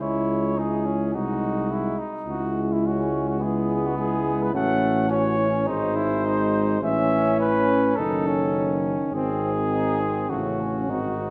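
Classical brass quintet writing in C# minor at 105 BPM, heroic and solemn, with a rubato 4/4 feel: a mellow, up-front cornet with light vibrato and soft attack carries the melody over a dark second line from the trumpet, while a clear trombone and French horn accompany in the background and a roomy tuba anchors the bass, all within a recital hall's lingering reverb through an 11.3-second excerpt that moves from C#m through G#7/B#, F#m/A and D#m7b5/F# before settling on A.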